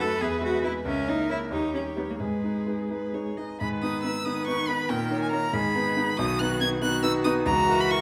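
A rich, even violin sings the melody up front with vibrato in this spirited, lively excerpt of a quick classical-period piano quartet movement in a rubato 6/8, as a focused, close cello carries a second line, a smooth-topped viola fills in the accompaniment, and a vintage-toned concert grand with deep bass and short sustain adds warm support, all captured by detailed microphones on a moderately reverberant scoring stage.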